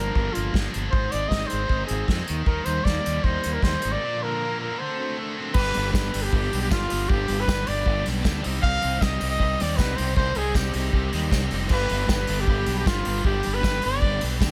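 Indie rock at 156 BPM, restless and bittersweet, in a short section cut from a longer piece: an up-front trumpet with vibrato and tape echo carries the melody, its tone punchy yet distant and roomy, over a bright, scooped high-gain guitar riff, a chorused twelve-string electric sitting clean in the background, and a round, fuzz-overdriven fingered bass. An acoustic kit played with bundle sticks enters at 0.2 seconds with an airy, polished small-room sound, a tight kick and a medium-tuned snare, and after a break from 4.0 to 5.6 seconds the harmony shifts from Gm7, Ab and Eb toward G and Cmadd9. A jingly tambourine joins in the background at 5.9 seconds, all set in a studio reverb.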